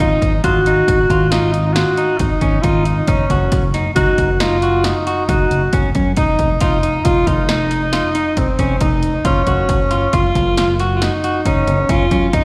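Progressive instrumental band music in an uneven 7/4 metre, with a straight, bright and intricate feel, cut from a longer piece. A warm alto saxophone carries a second line in jazz style with vibrato and subtone, sitting up front yet sounding roomy, with a slapback echo trailing its notes. An electric guitar at the edge of break-up plays fingered arpeggios in a dark, slightly broken-up tone, also touched by slapback echo. A fingered electric bass, direct and amped, anchors the low end, while a punchy analog drum machine with a tape-flavoured character drives hi-hat, kick and snare. The performance comes across as a live gig heard through the venue's PA, framed by light recital hall reverb.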